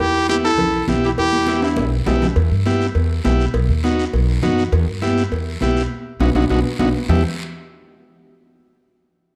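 Cumbia with a danceable, passionate drive, this brief section from a longer piece opens with a bright, vibrato-laced trumpet melody up front and a mellow, subtoned clarinet with scooped notes carrying a second line beneath, both dropping out at 1.9 seconds. A woody, pizzicato upright bass anchors things throughout, while a buzzy, overdriven vintage combo organ soaked in spring reverb arrives at 0.3 seconds alongside high-tuned, hard-hand congas set back in the mix. Ringing cowbell and timbales and a raspy, distant guiro fill out the percussion, with drum fills and a band accent near 5.9 seconds punctuating the dry, close 1970s-style studio sound.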